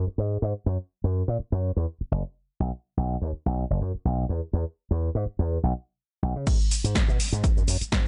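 A digital ambience that holds nothing above 10.8 kHz frames this nostalgic, sensual filtered disco house at 124 BPM with a light 16th-note swing: a bright, punchy slap bass through an envelope filter, sidechain pumping and a filter sweep plays alone until the drop at 6.5 seconds, when a punchy, tape-warm electronic kick arrives up front alongside a layered house kit of snare, hi-hat, cabasa and crash cymbal, all low-passed, with the hats, cabasa and cymbal also pumping under the sidechain.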